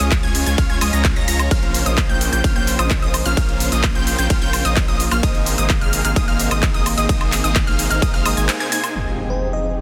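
Powerful and euphoric, this festival progressive house drop at 129 BPM opens at full force: huge, phased supersaw chords carry the riff over a deep, saturated sub bass, while a bright, ring-modulated unison pluck arpeggiates high above and a nasal, detuned pad sustains chords in the background, all pumping to the sidechain. A punchy, overdriven electronic kick sits up front beside a layered big-room kit of handclaps, hi-hat, ride cymbal, cabasa and woodblock, its hats and percussion softened by low-pass filtering, with a band accent at 8.5 seconds. At 9.0 seconds an electronic impact lands as the harmony settles on Fm7, and a sparkling, bell-like FM electric piano with tremolo and tape colour flickers in briefly at 9.3 seconds, all within light digital ambience and a dense, heavily limited master.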